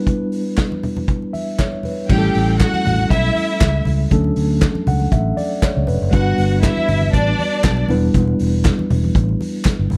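A mellow, clean tine electric piano opens this glamorous, driving disco excerpt at 119 BPM in E dorian, joined almost at once by an up-front vintage drum kit with a boomy kick, dark cymbals and a pumping small-room sound, along with very quiet low-tuned congas and crisp group handclaps, before a punchy, amped fingered bass and a lush, woody symphonic violin section with vibrato arrive at 2.1 s as the chords move through Em7, A7, Dmaj7 and Gmaj7, with the strings dropping out at 7.8 s.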